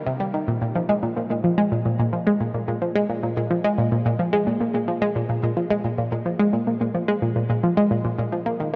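In a straight 4/4 at 109 BPM, this cosmic, expansive ambient excerpt features a lone analog pluck from 0.1 to 8.8 seconds, moving between Bb2 and Bb3. Its sound is round and nasal, built from a detuned sawtooth with a noise layer, shaped by a filter pluck with a fast attack and a short decay. It sits bright and up front, coloured by chorus, phaser and delay. A huge, wet reverb with an 8.3-second tail surrounds it, and the top end is capped at 7.7 kHz.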